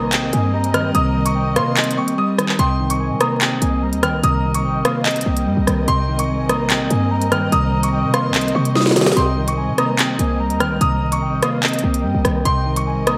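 Drill-style hip hop in C phrygian at 146 BPM with a half-time feel, this tense, dark excerpt from a longer piece is built on a Cm7 harmony. A clear concert grand piano carries the high melody with digital delay, joined by a velvety sawtooth synth lead with chorus, vibrato and delay as a second line. A mellow, clean electric guitar plays fingered accompaniment in the low-middle register, while a dark symphonic string section holds lush, bowed chords with a woody character. A short, punchy 808-style bass with a fast attack anchors the low end, and the up-front drill drum kit enters at 0.1 s with a sharp snare, crisp hats, handclaps and rim clicks under gated reverb. The kick drops out from 1.8 to 2.6 s and a drum fill arrives at 8.8 s, all set in a plate reverb with bright 1980s-style digital production and a layer of vinyl crackle.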